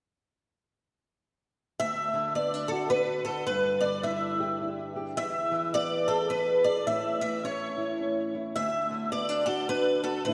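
Acoustic folk for a duo or small band, this short piece from a longer work moves in a lilting triple metre with a swung feel and a gentle, warm mood. A picked swing-style acoustic guitar carries the melody up front, its boxy tone flavoured by an ensemble chorus and tape echo, with finger squeaks audible along the way. Beneath it, a nylon-string guitar plays the accompaniment with a small, thumb-plucked sound, touched by a subtle chorus and its own finger squeaks. Both guitars enter together at 1.8 seconds and play through to 10.3 seconds, cycling through D, G5, E and A before returning to D. The whole sits in a lush hall reverb, giving a dreamy, soaked mix with softened highs.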